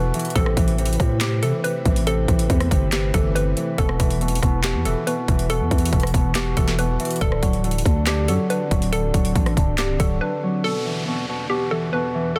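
A half-time 4/4 trap groove at 140 BPM in E minor drives this brooding, dark hip hop excerpt, with overdriven drums (hard-clipped kick, sharp snare, metallic hats) and a growling, buzzy 808-style bass under a hollow, bouncy square pluck melody coloured by chorus and tape echo, a thumb-plucked Celtic harp ringing up front, and an ethereal pad sitting mellow in the background; the drums stop at 10.1 seconds and the bass at 10.2, and a downlifter then marks the closing Esus2 passage from 10.6 seconds on a dense, heavily limited master.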